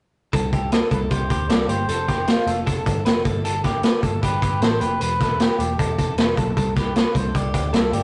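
A bright, clean twelve-string electric guitar picks arpeggios from 0.3 seconds alongside a round, foam-muted bass and an up-front, gritty, saturated vintage drum kit with a tight kick and medium-tuned snare, before a reedy, breathy melodica takes the melody at 0.5 seconds. This breezy, youthful excerpt of jangly indie pop moves at 154 BPM in C major, passing through F and E minor. The rough rehearsal-room sound sits in a moderate stone-room reverb with a rolled-off, warm top end.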